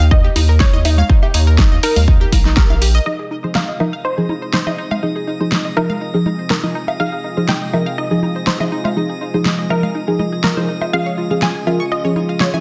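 A lush, detuned unison pluck melody and chorused analog pluck arpeggios open this dreamy, expansive progressive house excerpt in F minor at 122 BPM, riding a round, deep analog bass, a punchy up-front kick, a fat snare with warm hats and tape-warm congas and bongos, with sidechain pumping and tape echo on the plucks. At 3.1 seconds the bass and kick have dropped out as a mellow, chorused chord stab with a filter sweep and a thick, warbling background pad take over on Fm7, soon joined by a drifting, glassy harmonics texture. The harmony moves to Db at 10.9 seconds under a dense, heavily limited master with light reverb.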